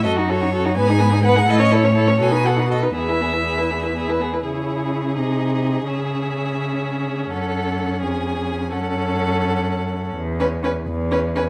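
Lively and cheerful, this quick classical-period movement for string quartet moves in 6/8 at 84 BPM in dotted quarters, starting in E major and turning to C# minor at 4.5 s, in a passage cut from a longer piece. A focused first violin carries the melody over a second violin line, with a soft-attacked viola accompaniment and a cello bass that sits up front while the three upper players sound distant. Every bowed part has a rich tone with vibrato, the second violin, viola and cello add expressive portamento, and a moderate stone-room reverb surrounds the quartet.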